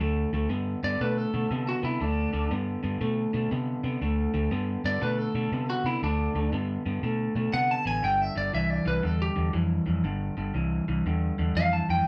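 A lightly driven lead guitar takes the spotlight in this laid-back, soulful blues, entering at 0.8 seconds with a bright, twangy, picked solo that sits up front in the mix. Beneath it, an electric guitar through a small old amp plays a riff in a lower register, its tone slightly broken-up and compressed. A vintage muted fingered electric bass anchors the low end with a dark, round, foam-muted sound. The band moves at 119 BPM in 4/4 with a swung eighth-note feel, and the harmony shifts from D5 to G5 at 8.0 seconds. Recorded live in one room with moderate studio ambience, this short excerpt is cut from a longer piece.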